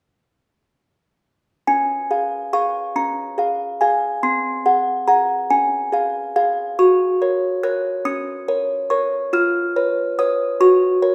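In a 6/8 at 47 dotted-quarter beats per minute, this tender, innocent classical lullaby fragment in Db major features a solo music box, a large, mellow, tinkling instrument sitting up front and slightly out of tune, playing from 1.7 to 11.1 seconds across a range from C4 to Gb6 over simple chords that settle back on Gb, all bathed in a moderate recital-hall reverb.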